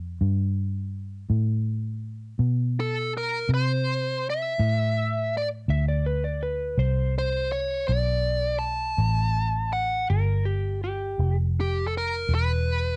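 Gritty and laid-back, this slow blues moves at 55 BPM in a 12/8 metre with a straight feel, and it is cut from a longer piece. A vintage muted fingered electric bass opens alone and carries the low end throughout, its tone dark, round and foam-muted, sitting up front in the mix. At 2.8 seconds a dark, smooth lead guitar takes the melody, picked and overdriven, with a cassette-tape colour to its sound. An electric slide guitar adds a second line from 5.7 to 11.4 seconds, compressed and slightly broken-up, also carrying that cassette texture. The harmony passes through a third-less G7, A minor, D5, Fsus24 and E5, and the whole recording has the dry character of a home cassette recording with little reverb.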